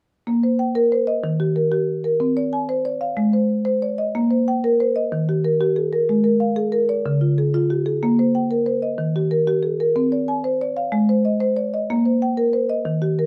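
Close, detailed microphones and a light reverb put a single marimba up front, its padauk bars sounding woody and round under soft mallets. This short cut from a longer piece of southern African traditional music moves at 124 BPM in dotted quarters, a straight 12/8 feel in Bb equiheptatonic tuning with A4 set at 442 Hz. The marimba plays arpeggios from 0.3 to 13.3 seconds, ranging from Db3+43c up to Ab5+29c, and its mellow tone gives the whole passage a hypnotic, warm character. Underneath, the harmony moves through Eb6/Bb, Eb, Bbm9/C, Ab and Bbm, then through Eb, Bbm7/Ab, Db and Bb13sus4, before passing again through Eb, Bbm9/C and Ab and settling on Bbm.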